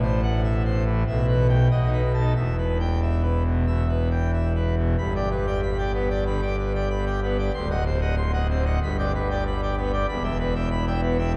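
A pipe organ on full registration with mixtures plays alone and up front, its brilliant, romantic voicing spanning from D1 to C6 in this majestic, stormy fragment of a classical organ toccata. At 94 BPM in a straight 4/4, it moves through E minor harmonies, with chords such as F#m7b5/A, B7 and Em, before turning to G major at 5.0 s, where G and D7b9 chords lead back toward Em. A dark production and a cathedral reverb with a 5.0-second decay wrap the sound in a vast, echoing space.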